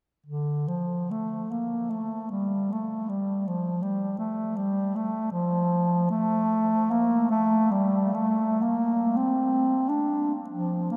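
Meditative and mournful, this brief classical excerpt for unaccompanied bass clarinet unfolds freely in a rubato 6/8 at roughly 24-54 BPM, the mellow solo line sitting up front between D3 and D4 from 0.3 to 11.0 seconds while a huge, echoing reverb with a 7.9-second decay fills a vast space around it.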